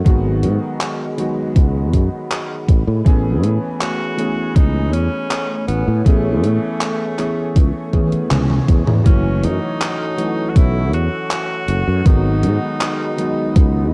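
A slow, straight 4/4 pulse at 80 BPM opens this vaporwave excerpt, driven by a thumpy, overdriven electronic kick set up front and a gated 80s digital drum machine whose handclaps, hi-hat and toms carry gated reverb and overdrive. Both drum parts sound re-recorded in a small room. Underneath, a bright, growly fretless electric bass sustains up front, while an electric grand piano with a clangy low end plays accompaniment through lush chorus, tape echo and 12-bit sampler grit. A warbling, detuned pad with a slow attack and long release sits in the background, holding mellow, nostalgic chords in A lydian that move from G#m7 to Amaj9. At 3.8 seconds a clear tenor saxophone takes the melody, its light vibrato and smooth top coloured by sampler grit and tape echo. A drum fill at 7.9 seconds and a band accent lead into a new passage at 9.1 seconds built on F#m7 and G#m7, all within a dark, woozy, faded cassette production.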